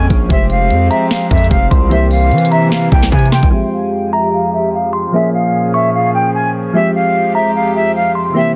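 Brooding and hard-hitting, this half-time trap cut at 149 BPM in F harmonic minor sets an airy, distant concert flute melody with tape echo over a crystalline FM synth bell line, mellow chorused electric-piano-like keys and reedy chamber strings with light vibrato, while a saturated, distorted 808-style bass and an overdriven trap kit with a knocking kick, sharp snare and crisp hats drive the opening until a drum fill at 3.1 s, after which both stop at 3.5 s and a filter sweep carries the flute, bell, keys and strings through to 8.6 s in a dry, dense, heavily limited mix.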